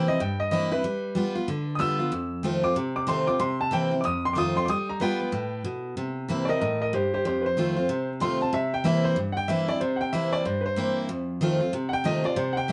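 Retro and upbeat, this swung rock excerpt at 187 BPM pairs a clear, woody upright piano carrying the melody, its action noise audible up close, with a full-bodied picked steel-string acoustic guitar whose fresh strings and finger squeak drive the C7, F7 and G7 changes, and the piano takes a solo from 6.0 seconds, all captured live in one room with moderate studio reverb and a softened top end.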